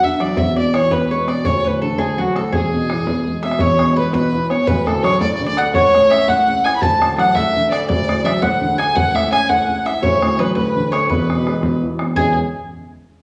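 In a straight 6/8 at 112 BPM, this lively, cheerful Celtic folk jig in E mixolydian is cut from a longer piece, its harmony moving between E, D and A/C# before settling on E6 at 12.2 s. A dark, woody fiddle with light vibrato and a smooth top carries the bowed melody up front, while a round, picked mandolin with double strings plays a second line, a warm upright piano supplies the low accompaniment, and a damped, tight, band-limited bodhran keeps the percussion. The whole sits in a wet recital-hall reverb and small-room ambience, coloured by worn, warbly cassette tape with a drifting pitch.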